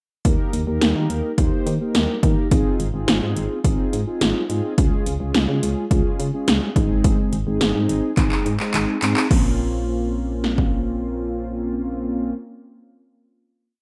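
A straight 4/4 drum-machine beat at 106 BPM drives this short, melancholic and cool synth-pop piece in Bb minor, its 80s electronic pad drums set up front with a punchy kick, gated snare, metallic hats, handclaps and crash, a fill at 8.2 seconds, and a stop at 10.7 seconds. A round, dark, sequenced FM bass moves through Eb, Ab6, Db and Ab, while mellow, detuned sawtooth synth brass with chorus and vibrato plays syncopated chords in close voicing. The pre-chorus resolves onto a held Bbmadd9 at 9.3 seconds, all under light reverb in a rough home demo mix.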